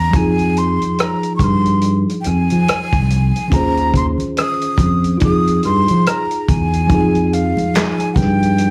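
A growly, bright fingered electric bass sits up front in this sultry, introspective neo-soul and R&B fragment, cut from a longer piece, with a lazy 16th-note swing in 4/4. Above it, a breathy metal jazz flute carries the melody with a straight tone, soft attack and lifted highs, while a worn, slightly out-of-tune tine electric piano plays clean, direct accompaniment; both carry a slapback echo. A dry, mid-forward soul drum kit joins at 0.1 seconds with a punchy kick, medium-tuned snare, rim clicks, hi-hat and handclaps, its top rolled off. The harmony moves from Fm9 to Eb13sus4 and back to Fm9, and at 6.9 seconds the opening section repeats as very quiet, damped, high-tuned congas with a thick skin enter under hard hands. The whole thing sounds like a live gig heard through a club PA, with a touch of club reverb and a layer of vinyl crackle.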